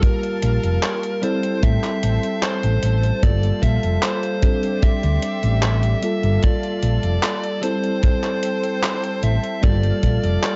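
A dark, cassette-worn haze hangs over this short vaporwave excerpt, its light reverb and dulled top end giving the sound a faded, nostalgic glow. At a relaxed 75 BPM in straight 4/4, the piece sits in G dorian and drifts through Gm9, Am7 and D7sus4. A picked fuzz lead guitar carries the melody, distorted and compressed, roughened by vintage 12-bit sampler grit and trailed by tape echo. Beneath it a mellow tine electric piano plays clean accompaniment with subtle chorus, while a lush, thick unison pad of detuned sawtooth and square waves holds sustained chords softly in the background with slow attack and long release. The rhythm pairs a tight, natural acoustic kick, placed up front, with a detuned 8-bit drum machine supplying tape-toned handclaps and hi-hat. A round, amped fingered electric bass with tube saturation enters at 0.4 seconds and anchors the low end until 10.4 seconds.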